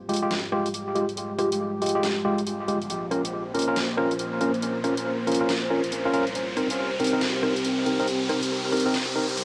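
Deep dubstep in F minor at 139 BPM with a swung half-time feel, dark and meditative, this build-up excerpt sets an up-front, clean tine electric piano's filtered stabs with dub echo over a moody, detuned sawtooth analog pad with chorus, a round, soft sub bass in the background, an overdriven electronic kit of deep snare, rim click and bright hats in studio reverb, and an electronic riser entering at 1.8 seconds, all through a gritty cassette-tape recording with light digital ambience, as the chords move from Fmadd9 to Bbm to Cm7.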